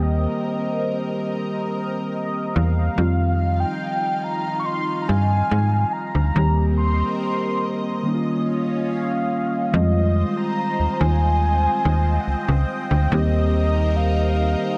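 A moody, late-night R&B excerpt in F minor at a slow 71 BPM opens with everything at once: a snappy, metallic FM bass sits up front, muted felt-like synth keys give intimate, dark accompaniment, and a lush, detuned unison pad holds sustained chords with chorus and phaser. Above them, a round, horn-like synth lead carries the melody with a soft attack and vibrato, its chorus and dub echo shared with the keys, over a drift from Cm7/Eb to Fm9 and Eb9. The echo-heavy mix has light reverb and digital ambience, with a second section arriving at 9.7 seconds and the bass dropping out at 14.6 seconds just before the cut.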